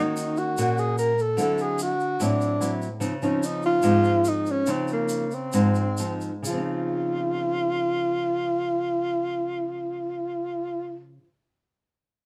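Bossa nova in Db major with a breezy, sunny mood, moving at 126-148 BPM in a straight 4/4, this short piece is cut from a longer work. A breathy tenor saxophone carries the melody up front, dark and whispered with subtone, soft attacks, scooped notes and vibrato, giving an intimate jazz-style solo voice. Beside it, a nylon-string guitar plays thumb-plucked accompaniment with a warm classical tone and fresh strings, moving through Ebm7, D9 and Dbmaj9. A grainy, mellow tube shaker sits low in the mix from 0.2 to 6.6 seconds, heard in a live room. The tempo slows between 3.0 and 6.5 seconds before a second section begins, and light reverb gives the whole a gentle sense of space.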